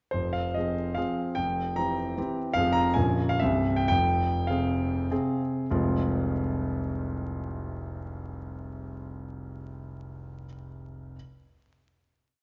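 Wistful and capricious, this brief romantic triple-time dance for solo grand piano unfolds with rubato and dotted rhythms, its clear, intimate tone up front with audible action noise as a single-line melody floats over bass and chords stressed on the second or third beat, slowing from 2.0 to 5.7 seconds before settling on a final chord, all within a moderate concert hall reverb and a vinyl crackle with a dulled top end.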